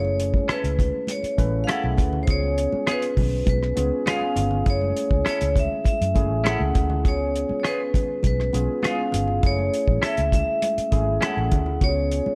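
This 12.3-second excerpt of lush 1970s-style soul opens with a ringing, metallic vibraphone melody struck with hard mallets, its slow motor vibrato and slapback echo sitting up front in a boxy small room. Beneath it, a barky tine electric piano, lightly overdriven through a combo amp with analog chorus, supplies accompaniment over a dark, round, foam-muted fingered bass, while high-tuned congas ring in the background. At 0.2 seconds a cloth-damped, thuddy drum kit joins with a tight kick, hi-hat and rim click, its rolled-off top keeping it dry and smooth, and at 0.5 seconds a clean, twangy, scooped electric guitar adds a compressed picked riff with a warbly pitch drift until 11.4 seconds. The straight 4/4 groove moves at 101 BPM in F# minor, swaying between F#m7 and C#7. Light reverb lends the whole a smooth, cinematic mood.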